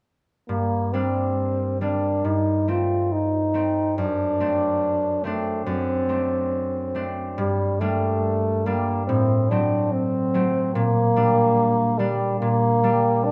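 Set in the lush, reverberant acoustic of a recital hall, this melancholic, solemn romantic classical passage is cut from a longer piece and unfolds with a gently rubato pulse. A warm, roomy French horn carries the solo melody with light vibrato and soft attacks, while a concert harp accompanies with fingerpicked, ringing chords. Both parts play together from 0.5 to 13.3 seconds over a brooding minor progression.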